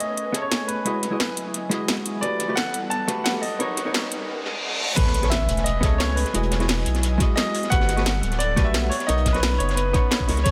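Soaked in echo and a moderate chamber reverb, this uplifting liquid drum and bass excerpt runs at 175 BPM in a straight 4/4, moving in A lydian through lush major-ninth chords. A natural-toned baby grand piano carries the melody with long sustain, while an airy, breathy pad with a detuned, noise-flecked edge holds soft chords in the background under chorus, phaser and sidechain pumping. A deep, thick sine sub bass sits up front with tube saturation, and from 0.3 s a dark, clean hollow-body jazz guitar adds fingered, compressed accompaniment alongside a knocking electronic kick. Both piano and guitar are filtered and swept during the opening build-up, where a drum and bass kit with a cracking snare and metallic hats keeps time, and a background riser and reverse cymbal lead into the drop. At 5.0 s an impact lands and a gritty, saturated breakbeat kit with a high-tuned snare and rolled-off top joins quietly behind the other drums, giving the second half a fuller, tape-tinged push.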